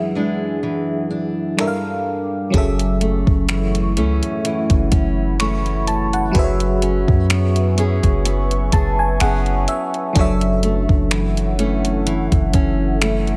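A crisp 8-bit drum machine, overdriven and up front with a thumpy kick, finger snaps and hi-hat, joins at 1.6 seconds in this sensual, late-night contemporary R&B cut, its 16ths carrying a light swing. From the start, a glassy FM electric piano with a bell-like attack plays accompaniment through chorus and phaser, and it takes a short fill at 8.3 seconds. Beneath it, a fingerpicked steel-string acoustic guitar adds woody, dark arpeggios treated with digital delay. Alongside the guitar, an ambient pad holds moody, warbling detuned chords bathed in chorus and its own reverb. A boomy 808-style bass, sine-toned and up front, arrives at 2.5 seconds to close the opening break. The harmony moves through extended chords such as F#m7, F#m11 and Dmaj9/F#, and the overall sound is dry and close.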